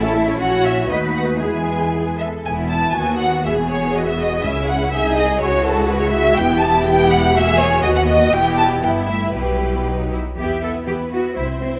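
Up front, a lush violin section carries the melody with soft-attacked, expressive vibrato and a smooth top, in a quick classical-period movement for string orchestra that feels urgent and restless. A second violin section, focused and bowed, shapes a lower line beneath it, while violas fill in a rich, even accompaniment. Cellos and double basses share the bass, with the basses adding an expressive depth to the ensemble. The music moves at 122 BPM in 2/4 with a rubato feel, starting in E major and turning to E minor at 6.4 s before a new section begins at 10.4 s. A moderate scoring-stage reverb surrounds the orchestra, and lossy compression artefacts colour the sound of this fragment, which is cut from a longer piece.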